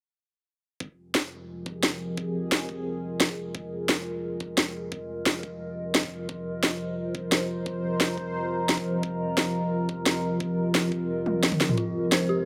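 Dark and tense, this excerpt of technical drum and bass in F minor runs at 175 BPM, as a bright, detuned sawtooth pad sweeps through a filter with chorus and sidechain pumping, a lo-fi, tape-like pad warbles through phaser and reverb, a knocking electronic kick and an up-front kit with a cracking snare and toms drive the groove into a drum fill at 11.3 seconds, and an eerie, inharmonic FM bell arpeggio with dub echo surfaces only at 11.8 seconds.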